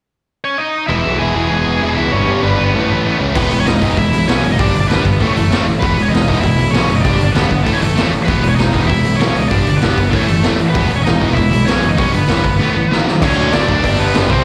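Heard live through a venue's PA with a hall's ambience, this rowdy, rebellious punk rock cut opens with an up-front, high-gain lead guitar melody carrying slapback echo from 0.4 s. Two picked rhythm guitars sit in the background, one biting and overdriven, the other tight, bright and distorted with its own slapback echo, riffing over a growly, direct bass through a repeating E, G and A progression. A raw garage drum kit crashes in at 3.4 s, gritty and saturated with a boomy kick and a rolled-off top, and a drum fill at 12.9 s ushers in a brief final section.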